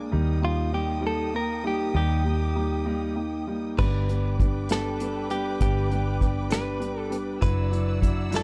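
A clean, compressed electric guitar, picked and recorded direct with tape echo, carries the melody from 0.4 seconds in this tender, romantic six-eight pop ballad at 66 BPM, moving through Eb, G and Dadd9/F#. A present grand piano with long sustain and a round, foam-muted vintage bass sit up front, while a lush bowed string section adds soft-attack sustained chords with vibrato. At 3.8 seconds an acoustic kit played with bundle sticks enters, with a tight kick, medium-tuned snare, hi-hat and crash in an airy small room, all within a dark, warm production with studio reverb.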